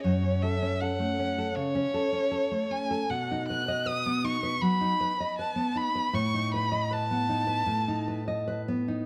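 A moderate recital-hall reverb surrounds this serene, lyrical excerpt from a romantic duo for violin and classical guitar, moving at 78 BPM in 4/4 with a rubato feel over F#m, B and B7/A harmonies. Up front, a single bowed violin sings the expressive melody with a rich tone, vibrato and portamento, reaching into its high register before it stops at 8.5 seconds. Beside it, a fingerpicked nylon-string guitar with fresh strings supplies full-bodied, deep accompaniment that carries on alone until 9.1 seconds.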